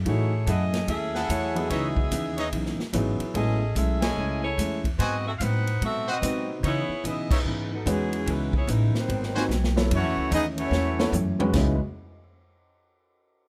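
A mellow, vibrato-rich saxophone section carries the melody through this dramatic, sultry big band swing excerpt, with a clear trumpet section adding soft-edged stabs, band accents landing at 4.0 and 7.2 seconds, and the piano dropping out briefly before returning. A woody pizzicato upright bass, a dark, clean hollow-body electric guitar, a grand piano and a natural-sounding drum kit with a punchy kick, ride, hi-hat and toms drive the swing. Near the end, a tight trombone section enters on a second line at 9.0 seconds and a warm, up-front trumpet section takes over the melody at 9.9 seconds amid drum fills, all captured close and dry.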